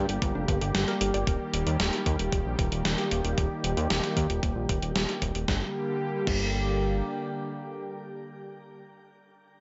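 A brassy analog pad holds sustained chords from the first moment, treated with chorus, sidechain pumping and a shimmer reverb, while a very quiet, detuned unison pluck plays arpeggios only until 1.3 seconds. This short synthwave excerpt sits at 114 BPM in straight 4/4 and G minor, with a nocturnal, moody character as the harmony moves from Gm to Eb and back to Gm at 5.5 seconds. A fat, sawtooth-based analog bass with ring modulation and a filter sweep sits up front until 7.0 seconds. A gated 80s digital drum machine supplies crash cymbal, hi-hat and a snare treated with gated reverb, alongside a thumpy electronic kick, both tape-colored and re-recorded in a small room before dropping out at 6.4 seconds. The pad lingers alone until 8.8 seconds, and the overall mix carries light reverb and a soft, rolled-off top.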